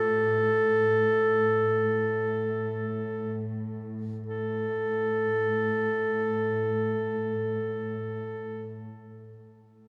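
Moving in free time and slowing down through its first 4.3 seconds, this solemn, mournful Caucasian folk lament sets a close-miked solo duduk up front, singing a melody around A4 with scooped notes in folk style, over a dark, woody cello section that sustains a bowed drone around A2 with vibrato, the two bathed in a moderate cathedral reverb throughout this brief cut from a longer piece.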